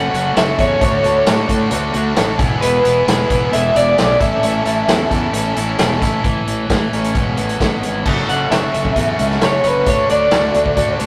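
This rough rehearsal-room recording carries tube saturation and a wet stone-room reverb, and it is cut from a longer indie rock piece. The mood is wistful yet carefree, moving in a straight 4/4 through F#m7, Dmaj7, E and A. A vintage acoustic kit sits up front with dark cymbals, a medium-tuned snare, a tight kick and a rolled-off top, while a fingered bass with fuzz and overdrive lays down a round low end. Two riff guitars fill the middle: an overdriven semi-hollow guitar with a bright, hollow-body edge, and a scooped high-gain guitar with distortion tucked into the background. The melody comes from an electric guitar through a small old amp, slightly broken-up and bathed in spring reverb, and from 8.1 seconds a clean electric guitar solo rides over F#m7 and D.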